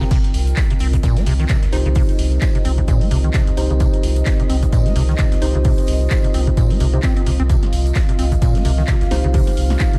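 Echo-heavy and digitally ambient with lossy grit, this trippy, raw acid house excerpt in C minor at 130 BPM with a swung 16th feel drives a squelchy, resonant square-wave acid riff, filter-swept throughout and roughened by tube saturation, 12-bit sampler crunch and dub echo, over a round sine sub bass and a punchy, up-front electronic kick, while an analog drum machine adds claps, hats, snare and crash, a distant acoustic arena kit contributes a fat hall snare, hats and tambourine, a dark, detuned sawtooth pad and a warbling, nostalgic tape-like pad with phaser and reverb pump in the background, and a mellow, clean tine electric piano enters at 1.7 seconds with echoing stabs.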